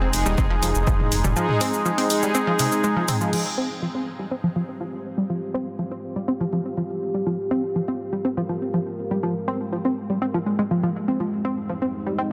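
Melodic techno at 122 BPM in F minor, this driving, melancholic excerpt from a longer piece sits in straight 4/4 and is built around a tight, detuned sequenced synth whose filter-plucked sawtooth and pulse-wave arpeggios run up front throughout, dressed in chorus, delay and sidechain pumping. Over the opening Fm chord, a bold, nasal, brassy analog pad fires bright stabs with vibrato and a filter sweep, while a round, mellow analog bass, a tape-warm analog drum machine of crash, hi-hat, shaker and toms, and a punchy electronic kick give the first seconds their push. The bass and kick drop out within the first second or so, and the pad and drums fall away around 3.3 seconds as the harmony moves to Fmadd9. From 4.2 seconds, a deep, moody ambient pad spreads full-bodied unison sawtooth and sub-octave chords beneath the arpeggios, with a slow attack, long release and its own reverb. The chords settle on Ab/F near the close, all inside a huge ambient reverb and a dense, heavily limited modern master.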